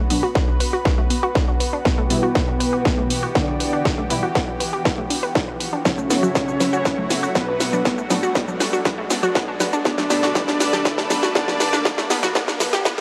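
Dramatic and driving, this melodic techno build-up excerpt opens with a lush, airy unison pad holding chords beside punchy, wave-folded pluck arpeggios with tape echo and very quiet brassy stabs, before a distorted kick and a layered kit of cracking snare, hats, shaker and congas drive everything forward. At 1.9 seconds a bold, fat analog synth brass melody and a smooth supersaw second line enter, the pad, pluck, brass and supersaw pumping against the kick, while a faint riser sounds and filter sweeps build through a gritty, dry hardware sound lightly touched by reverb.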